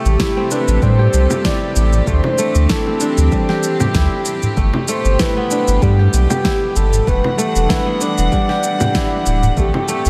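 Organic downtempo with a mystical, meditative air, this short passage cut from a longer piece drifts over a gently swung groove through Am7, D9sus4, Gadd9 and Em9 before returning to Am7. A breathy, flute-like synth lead carries the melody with soft vibrato, analog chorus and tape echo. It is framed by bright, ringing fingerpicked kora arpeggios trailing a diffuse ambient delay and a distant, earthy chamber string section holding bowed chords that pump against the sidechain. Up front sits a deep, round sine sub bass, also pumping, while layered electronic shaker, a fat snare and congas are joined a moment later by a deep electronic kick, both with a tape-warm, small-room character. A small acoustic udu enters in the background at 1.9 seconds. The whole mix is dreamy and soaked in cathedral reverb.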